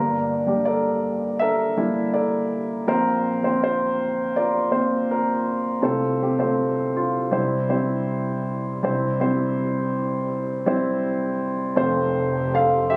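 Hopeful and nostalgic, this short acoustic folk-pop ballad moves at 81 BPM in a straight 4/4, led by a dark, woody upright piano that carries the melody up front through chords from Gmadd9 and Bbsus2 to F/C, C and finally F. At 11.8 seconds a soft, airy pad with a breathy noise layer, detuned sawtooth tones, a sub octave and chorus drifts in quietly behind the piano, holding sustained chords with a slow attack. Captured on a phone in a moderately reverberant club-like room, the sound is intimate and natural, and the passage is cut from a longer piece.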